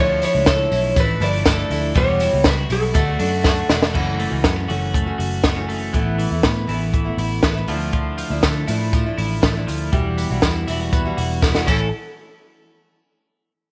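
A straight 4/4 beat at 120 BPM from a dry, up-front cocktail drum kit with a high-tuned snare, punchy kick and dark cymbals, with drum fills at 3.4 and 11.4 seconds, drives this youthful, breezy jangly indie pop excerpt, where a slightly broken-up, lo-fi electric guitar through a small old amp carries the melody with slapback echo until 3.7 seconds over bright, twangy twelve-string electric arpeggios with subtle chorus and slapback, a full-bodied picked steel-string acoustic guitar accompaniment, a round, foam-muted vintage electric bass and a jingly tambourine in the background, all set in light reverb and studio ambience.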